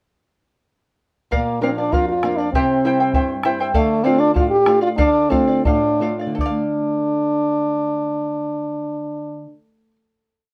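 Earthy and melancholic, this short Andean folk piece in D minor moves at 79-99 BPM in a straight 2/4, with a warm, classical-style French horn singing a motif-based solo melody up front over a shimmering, fingerpicked and strummed charango, a small-sounding thumb-plucked nylon-string guitar with finger squeak playing oompah bass notes and chord figures, and a round, dry bombo repeating its pattern until 6.7 s, set in light reverb as it moves through Bb, C and Dm, then slows from 3.7 s into a final chord at 6.4 s.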